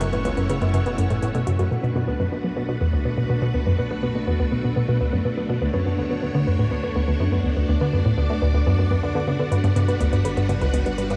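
Ambient, sequencer-driven space music with a hypnotic, cosmic mood, this short excerpt is anchored by an up-front analog pluck riff with chorus and delay, over a lush vintage string machine, a gentle, nasal arpeggiated pluck carrying a filter sweep, and a deep, very quiet bass. A dry, overdriven rhythm box with metallic hats and toms sits in the background for the opening 1.7 seconds alongside a bubbling, resonant stepped-filter texture, and the rhythm box returns at 9.5 seconds. The chords move from F#m through Bm7 and Dmaj7 to Gmaj7, all bathed in a dark, roomy hall reverb.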